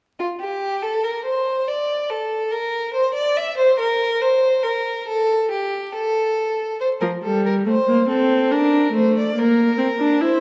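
Classical baroque-style fugue excerpt for string quartet with an elegant, joyful mood, where a single rich, smooth violin with vibrato carries a second line from 0.2 s, sounding distant yet up front, until a close, expressive viola with soft attack and portamento joins as accompaniment at 7.0 s, all set in a dark production with moderate scoring-stage reverb and a layer of vinyl crackle.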